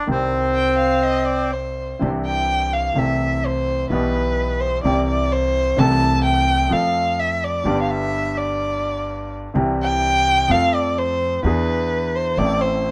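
Light reverb surrounds this sultry, dramatic tango fragment, where a reedy, band-limited bandoneon carries the melody up front for the first 1.5 seconds over a vintage-toned grand piano and a woody, thumpy pizzicato upright bass on gut strings. A bowed violin joins at 0.5 seconds and takes the solo from 2.0 seconds to the close, its expressive vibrato, portamento and soft attack giving a warm line with a smooth top. The rubato feel lets the harmony travel from an opening C minor chord through brighter major colours before ending on E7 and A minor.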